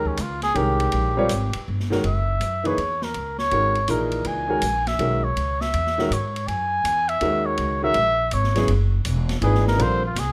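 A veiled, breathy cup-muted trumpet solo opens this open, searching modal jazz waltz in F# mixolydian at 162 BPM with swung eighths, carried up front over a warm baby grand piano and a woody pizzicato upright bass as the harmony moves through Eb7sus4, F#9 and A#7, while a quieter acoustic drum kit with dark cymbals and a boomy kick joins at 0.1 seconds, all in light reverb in a fragment cut from a longer piece.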